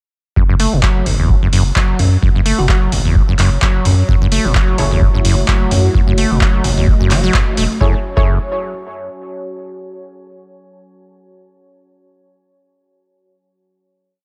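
A squelchy, resonant sawtooth acid bass sits up front, running a 16-step line with accents and slides under filter sweeps, pumping against the kick and trailing analog delay echoes. This driving, trippy acid house piece in F# dorian moves at 129 BPM with a swung sixteenth feel, built on a deep four-on-the-floor kick and an electro drum machine adding claps and metallic open hats, both carrying the air of a large room. A thick, saturated sine sub bass plays a dotted rhythm beneath, also pumping, while a brief bell-like FM electric piano phrase sparkles through chorus, phaser and delay at 2.6 seconds. A warbling, vintage-toned ambient pad fades in, its slowly shifting chords bathed in chorus and reverb, and from about 4.8 seconds a detuned analog pad holds moody sustained chords alongside muted, filtered dub stabs that echo sparsely in one parallel shape. The groove opens on F#m7 and gives way at 7.8 seconds to a final chord, with the ambient pad ringing on to 9.6 seconds in a lightly reverberant, echo-heavy mix.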